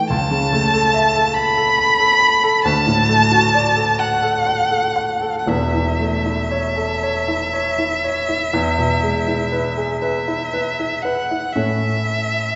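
Heard from well back in a concert hall, the recording is bathed in a wet, lingering reverb and capped with a soft, dull top end. In this tender, lyrical romantic fragment in A major, a single bowed violin carries the melody up front with vibrato, soft attacks, expressive portamento and a warm tone, while a polished, present baby grand piano with short sustain plays the accompaniment across both violin and piano's full span of 12.6 seconds. The slow, rubato 12/8 pulse of roughly 37 to 48 beats per minute moves from A/C# through D, A/E and E before settling back onto A at 11.5 seconds.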